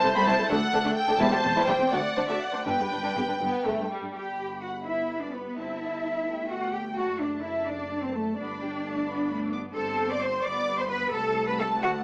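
In a lilting 6/8 at 78-88 BPM counted in dotted quarters, this short excerpt from a quick classical-period movement for string orchestra moves with a graceful, cheerful rubato in G major. A warm, smooth first violin section carries the melody high in its range, while a darker second violin section adds an expressive line colored by vibrato and portamento. Beneath them, the violas fill in a lush, even accompaniment, and the cellos sit up front with a focused tone and a smooth top, anchoring the bass alongside a rich double bass section that sounds more distant. The harmony moves through D, C/E and G before settling toward D/F#, G and an Am/C near 11.1 s. A moderate large-studio reverb gives the ensemble a sense of space, though the overall sound has a small-speaker quality.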